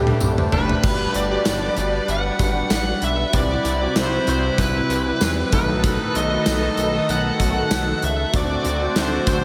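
This 1980s-style pop excerpt moves at 96 BPM in 4/4 with a light sixteenth-note swing, its mood uplifting and romantic, and it opens on a Dsus4 with a drum fill, a tine electric piano fill and a band accent before settling into a progression through Gmaj7, Cmaj7, B7 and D7. Up front, a high-gain distorted lead guitar carries the melody, picked and smeared with a diffuse ambient delay. A bell-like, clean tine electric piano with ensemble chorus plays the accompaniment, while a smooth, detuned sawtooth pad with chorus and tremolo holds sustained chords in the background. Underneath, a glossy chorused synth bass mixes pulse and sawtooth tones with a plucky filter, and a loose horn section with light vibrato adds octave-doubled stabs from 0.1 seconds. A gated 80s kit with a punchy kick, medium-tuned snare and bright cymbals in a stone room drives the groove, joined by a very quiet, jingly tambourine from 0.2 seconds, and the whole mix is soaked in a huge, dreamy reverb.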